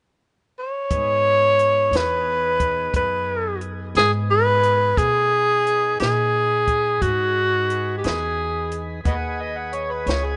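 A slow 12/8 blues at 59 BPM in G# minor, smoky and mournful, where a breathy, whispered tenor saxophone sings up front from 0.6 s with scooped notes and vibrato over smooth tonewheel organ chords through a slow rotary speaker, woody pizzicato upright bass and a dry cocktail drum kit with a high-tuned snare and punchy kick, before a gritty, overdriven harmonica with tape echo enters at 9.1 s, all in a rough small-room demo sound.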